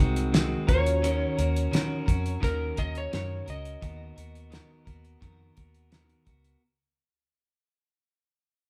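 Bedroom pop with an indie pop lilt, this wistful, hazy fragment fades out across its 6.6 seconds as a dark electric slide guitar played with fingerpicks carries the melody from 0.7 s over a slightly broken-up, compressed electric guitar with warbly pitch drift, a worn, slightly out-of-tune tine electric piano heard only until 1.1 s, a round, foam-muted vintage bass, and an up-front, cloth-damped drum kit with a fat snare and tight kick, the band playing together in one lightly reverberant room.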